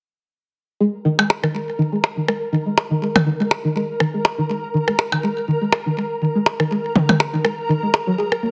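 Minimal techno at 122 BPM in 4/4, with a 55% swing on the sixteenths, this short cut from a longer piece feels sparse and quirky. A twangy, string-like resonator pluck carries the riff from 0.8 seconds, its fast attack and decaying notes spanning D#3 to G#4, with a sawtooth edge, a noise layer, a filter sweep and a moving notch, all dressed in lush chorus and tape echo up front. From 1.1 seconds a grainy, flickering texture holds on A#4, a bright, detuned triangle tone with a slow attack, long release and granular character sitting further back in its own reverb. Electronic percussion blips and toms arrive at 1.2 seconds, tape-warm and up front, trailed by digital delay. The whole is set in a moderate digital room and pressed into a heavily compressed, radio-like sound.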